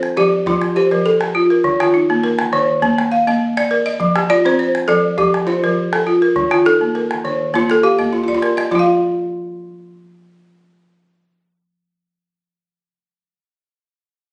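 A straight 4/4 pulse at 102 BPM carries this hypnotic, warm excerpt of West African traditional xylophone music in F mixolydian, where two up-front balafons circle F, Eb5 and Bb chords, one playing a woody, buzzing melody with hard rubber mallets and plate reverb while the other spins dry arpeggios with rubber mallets, as a small, compressed, saturated calabash keeps the percussion, a drum fill arriving at 8.0 s before the calabash drops out at 9.0 s, all captured on a phone in the room with moderate studio reverb and rolled off above 10.4 kHz.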